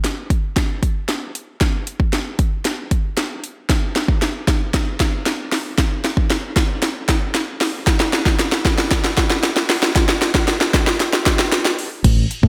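A punchy, layered house drum kit drives this energetic, confident dance-pop clip at 115 BPM in a straight 4/4. The kick, cracking snare, metallic hi-hats and crash sit up front with gated reverb, building through an extended drum fill from 0.0 to 12.0 seconds. At 12.0 seconds a dark, round fingered electric bass arrives with sidechain pumping, set in a lush digital hall ambience and a bright 1980s-style production tuned to A4 = 438 Hz.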